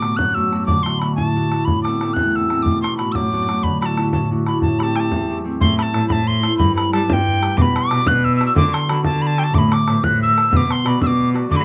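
A wet small-room reverb surrounds this dark, lively Celtic jig excerpt in A dorian, driving along at 122 BPM in 6/8. Up front, a bright metal whistle carries the melody with a pure, vibrato-laced tone and crisp, chiffy attacks, over a ringing fingerpicked concert harp and a damped, tight bodhran with a vintage, band-limited sound. A rich bowed chamber string section holds a drone on A in the background until 5.7 seconds, and at 5.6 seconds a warm, focused solo cello enters up front to carry the bass line.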